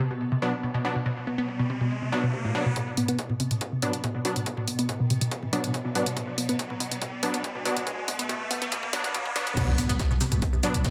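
A straight 4/4 pulse at 141 BPM drives this relentless slice of peak-time techno, cut from a longer track. It opens on a lush, detuned sawtooth unison pluck riff with tape echo, over a swarming, tense drone that evolves in the background, while an overdriven electronic kit of crash, hats, shaker and toms pumps under a low-pass filter. Sawtooth supersaw stabs sit up front with analog delay, and a riser begins at 0.3 seconds. A layered, punchy kick arrives at 2.8 seconds to start a build-up full of filter sweeps and a drum fill, before the drop and impact land at 9.6 seconds. There, a dark brushed acoustic kit with a high-tuned snare slips in beneath the mix, and a moment later a growling, buzzy 808-style bass with tube saturation joins it, all within a mix that is dreamy and soaked in plate reverb with a faint mains hum.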